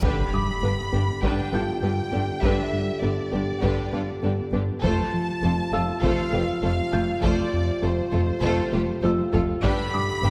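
A wet scoring-stage reverb gives this relentless, futuristic cinematic cue, a short cut from a longer hybrid orchestral and electronic film score, a big hall sound in straight 4/4. It opens on a huge, bright reverse cymbal and impact that rings until 2.4 seconds. The melody sits in a focused, lush violin section with vibrato, and a second violin line and a background viola section add smooth bowed accompaniment. A tight, mellow French horn section holds sustained chords moving from G to F and back to G. Underneath, a fat, thick analog bass riff pairs with a clear but very quiet cello section and a rich double bass section, while a very quiet, round, nasal synth pluck spins dark arpeggios. A background taiko ensemble, close and dry with heavy sticks, drives the cue and plays a fill from 8.7 to 9.6 seconds, and a felt-muted, intimate upright piano adds a soft texture through digital delay.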